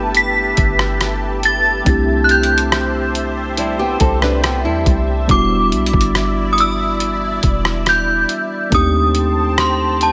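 Romantic and smooth, this contemporary R&B excerpt moves at an unhurried 70 BPM over chords such as G69 and Em9, with a chiming, inharmonic FM synth chime carrying the melody through ensemble chorus and delay, while a mellow tine electric piano and a lush, detuned unison pad with chorus and phaser fill in the harmony. Underneath, a soft, round 808-style bass and a gritty, up-front sampler-style drum kit with thumpy kick, hi-hat and rim click hold the groove. Between 3.6 and 5.3 seconds a fingerpicked flamenco guitar adds brief delayed arpeggios, all set in light reverb.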